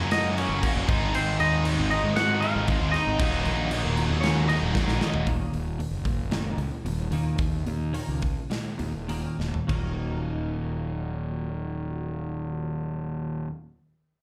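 A growly, punchy fuzz bass sits up front through this dark, cathartic cut from a longer quiet-loud alternative rock piece in Eb minor, moving in 4/4 between 98 and 117 BPM. For about the first five seconds a scooped, twangy guitar carries the melody over riffs from a crunchy phased guitar with slapback echo, a double-tracked high-gain guitar in the background and a very quiet fuzz guitar, while a big acoustic kit with bright cymbals and a punchy kick drives into a fill. Then a compressed, chorused twelve-string guitar takes over with up-front arpeggios as the tempo slows and the drums stop at 9.8 seconds, all heard as a live club gig through the house PA with a touch of club reverb.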